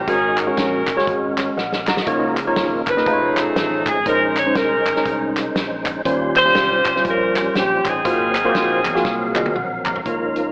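Uptempo gospel at 120 BPM in 4/4 with a swung eighth-note feel, jubilant yet reverent, heard through an AM radio filter and a moderate echo chamber reverb. A dark, vintage saxophone section carries the melody up front with light vibrato in a jazz style, playing until 9.6 seconds, while a barky, clean tine electric piano with analog chorus sits up front as well on accompaniment and adds a fill near the end. In the background, a fat, lightly overdriven tonewheel organ holds sustained chords with key click, percussive attack, chorus vibrato and a slow rotary speaker, and a round, dark fingered electric bass anchors the low end. A natural country drum kit with a punchy kick and medium-tuned snare plays throughout, with fills around 1.6 seconds and again near the close, joined by crisp, close group handclaps. The harmony moves through rich extended chords from Ab9sus4 to Ab13, and a very quiet, mellow French horn section enters with smooth sustained chords at 10.0 seconds as this fragment of a longer piece cuts off.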